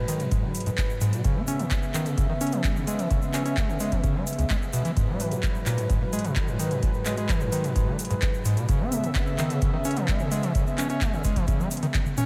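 Acid house at 129 BPM in a straight 4/4, hypnotic and driving, this dreamy, reverb-soaked cut features a deep, tape-warm electronic kick up front, a squelchy, gritty square-wave acid bass with resonant filter sweep, distortion and delay, a smooth detuned sawtooth pad with chorus and sidechain pumping sustaining chords that move between G#m7 and C#m7, a booming analog drum machine with metallic hats, handclaps and toms re-recorded in a large room, and a grainy, bright tube shaker in the background, closing with a drum fill from 11.5 seconds.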